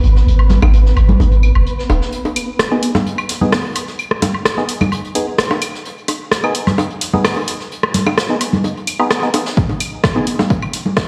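This cool, sparse minimal techno excerpt at 129 BPM in G# minor opens on a deep, punchy sine sub bass with a pitch-drop attack, acoustic brushed hi-hat and high-tuned snare from a small room, and a flickering, grainy granular texture, joined at 0.4 seconds by dub-echoed woodblock, congas, bongos and claves, with the bass, texture and brushed hats all pumping against a sidechain. The bass and texture fall away by 2.1 seconds as the build-up begins. A tape-warm house kit of warm hats and rim click arrives at 2.4 seconds, followed by a hollow, wave-folded organ stab from 2.7 seconds, thickened with chorus, phaser and dub echo. A layered, up-front electronic kick finally lands at 9.6 seconds, all inside a big, bare-room reverb.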